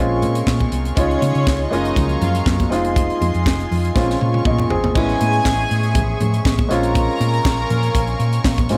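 A straight 4/4 disco groove at 120 BPM drives this glamorous, celebratory excerpt, cut from a longer piece, with a tight funk drum kit entering at 0.2 seconds, its high-tuned snare, handclaps, hi-hat, crash cymbal, toms and tight kick sitting up front with a small-room, mid-forward sound. Very quiet congas, bright and high-tuned with a thin skin, add a live-room sparkle beneath the kit, while a round, dark hollow-body electric bass, fingered and amped, anchors the low end. A concert grand piano plays accompaniment up front with deep bass, and a rich, earthy string section holds sustained chords with a smooth top. From 1.0 seconds a studio violin section carries a second line, reedy and close with light vibrato and a gut-string, period-style tone, touched by tape echo. The harmony moves through Bbm7, Dbmaj9, Gbmaj7 and Fm7 before a drum fill at 4.0 seconds leads into a new section at 5.0 seconds that shifts to Amaj7 and back to Bbm7, all set in light reverb.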